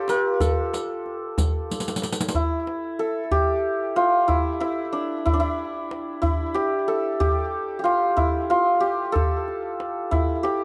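A Persian modal ensemble piece in a straight 6/8, cut from a longer work, with a warm, passionate mood. The bright, shimmering santur carries the melody up front, its ringing hammered tones touched by tape echo, while a warm, tight tombak played with hard hands sits close and dry underneath throughout. A riq adds bright, jingling color at the start, and a drum fill rounds off the opening before the riq drops out at 2.4 seconds, leaving santur and tombak in a small, moderately reverberant room.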